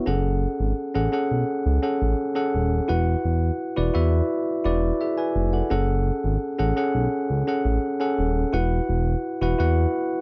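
Urgent and moody, this 1980s-style pop excerpt at 85 BPM in F# minor pairs a bright, bell-like tine electric piano, heard clean through built-in speakers, with a mellow sawtooth-and-square-wave synth bass that carries vibrato and sustained, fast-attack notes, both parts up front over F#madd9 and Esus2 chords in a dry, close 1970s-style studio sound with digital ambience.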